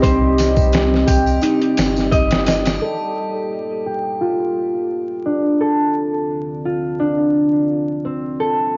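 A lightly swung trip hop groove at 86 BPM in 4/4 opens this smoky, cinematic fragment, driven by a gritty, pitched-down sampler-style drum kit with a thumpy kick, medium-tuned snare and hi-hat, overdriven and up front with studio reverb. Beneath it, a round, deep dub sub bass with tube saturation holds the low end, while quiet tambourine and triangle add acoustic shimmer and a tense, string-like bowed drone sits in the background with vibrato and its own reverb. Across the whole passage, a dark, detuned analog pad sustains chords with chorus, and a ringing, thumb-plucked concert harp plays arpeggios up front, coloured by 12-bit sampler grit, low-pass filtering and tape echo. At 2.8 s the drums, bass, percussion and drone all stop, leaving harp and pad alone as a filter sweep moves over the harp until 8.8 s. The harmony in D phrygian shifts from Cm to Gm9 to Dm7, and the whole piece carries the muffled character of a home cassette recording with vinyl crackle and light digital ambience.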